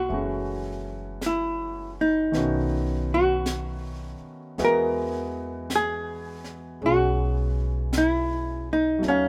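Wistful and intimate, this slow swung jazz ballad excerpt at 54 BPM features a dark, clean hollow-body electric guitar carrying the melody up front, with warm, natural grand piano accompaniment, woody pizzicato upright bass and a brushed kit with a high-tuned snare entering at 0.1 seconds, all in a dry, close sound moving through F#m7 and B7 to Emaj9.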